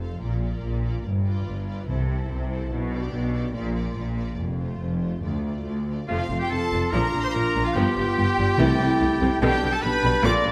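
Triumphant and soaring, this short excerpt of heroic adventure film score in F major at 144 BPM opens with a lush, vibrato-rich violin section carrying the melody over a faint, distant second violin line, soft-edged violas with expressive portamento in the background, close cellos and an up-front, smooth-topped double bass section, with very quiet timpani played with medium mallets entering at 1.9 seconds, before the winds and brass join at 6.1 seconds: a bright oboe, an airy, hollow silver flute and a roomy clarinet on second lines, dark sustained horn chords and mellow, vintage-toned trumpet stabs, all set in a moderate scoring-stage reverb.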